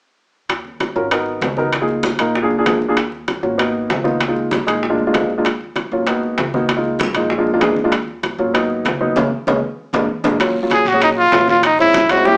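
A clear, close-miked trumpet enters at 10.7 seconds with a lightly vibrato jazz solo in this driving, fiery Afro-Cuban jazz excerpt, where a woody, short-sustained upright piano comps up front, a dark, thumpy pizzicato upright bass holds the low end, ringing metal-shell timbales sit over round, low-tuned bongos and bright, distant congas in the background, a raspy guiro joins at 10.4 seconds, and a band accent with a drum fill leads into the new section, with the mix carrying a small-speaker sound and moderate studio reverb.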